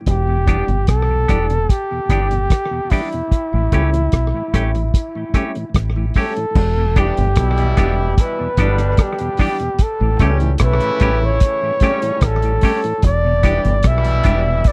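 Roots reggae with a serious, hypnotic mood, this short cut from a longer piece sits on a straight 4/4 groove that cycles between Em7 and A7. A breathy, whispered flugelhorn carries the melody up front, its soft attack and vibrato trailed by dub echo. Beneath it, a deep, foam-muted fingered electric bass rumbles round and punchy, while a cloth-damped drum kit thuds dry and dark with a tight kick, rim clicks, hi-hat and dark crash cymbals, touched by slapback echo. A mellow tonewheel organ with key click turns slowly through its rotary speaker, and a bright, clean semi-hollow guitar adds compressed picked accompaniment with dub echo, both set low in the mix. At 7.0 seconds a clear, vintage horn section enters on a second line in octave doubling, giving the closing section a fuller ensemble sound within a close, dry studio recording.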